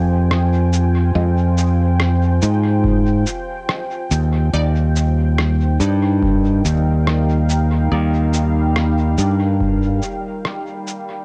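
Spacious and hazy, this short ambient dub fragment drifts over a deep, warbling sawtooth pad holding Fm7 before shifting to Ebmaj7 at 4.5 seconds, while a bright, up-front fingered electric bass with tube saturation anchors the low end. Muffled, pitched-down rim clicks and shaker carry overdrive and dub echo, joined by an overdriven analog kick at 2.8 seconds, as a muted chord stab with phaser, 12-bit sampler grit and echo sits in the background. A resonant, bubbling stepped-filter texture murmurs faintly beneath, and the home cassette recording lends a dusky, rolled-off sound before the fade that begins at 9.0 seconds.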